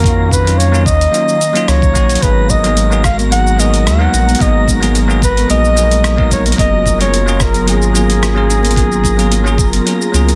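A gritty, thumpy electronic kick and a dusty, compressed sampler-style kit of cabasa, hi-hat, rim click and softly clipped snare set a straight groove in this wistful sunset chillout excerpt, with a deep, round sub bass up front and distant bongos and congas joining at 2.5 seconds. A mellow, breathy flugelhorn carries the jazz-style solo melody with vibrato and scooped notes over a bell-like, clean tine electric piano, both trailed by tape echo. Behind them an airy, nasal pad with chorus and vintage sampler grit and a faint wind-like noise texture drift through chords that move from D#m9 to G#m9 and then F#maj9 at 6.6 seconds, all within a dense, heavily limited modern master.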